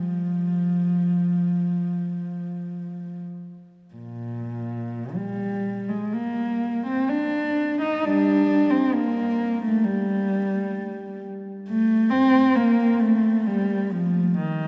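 A long, wet church reverb surrounds this mournful, meditative classical fragment, cut from a longer piece for unaccompanied cello. A single bowed cello, close and up front, plays alone throughout its 14.7 seconds in a free, expressive rubato, its dark, woody tone softened by sul tasto bowing and colored with vibrato.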